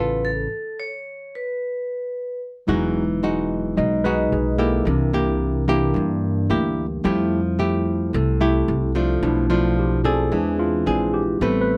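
This relaxed, sophisticated bossa nova excerpt opens with a ringing, airy vibraphone melody played up front with medium hard mallets, over fingerpicked nylon-string guitar with an old-string, classical tone and thumpy pizzicato upright bass. A stop arrives at 0.5 seconds, where the harmony drops out, and the vibraphone's brief phrase is over by 2.4 seconds. At 2.7 seconds a bright, barky tine electric piano with a clean, direct sound takes a solo. The guitar and bass carry on beneath it through a lush progression of Emaj9, C7, Fmaj9, Bm7b5 and Eaug7. Light reverb gives the ensemble a touch of space, and the piece is cut from a longer performance.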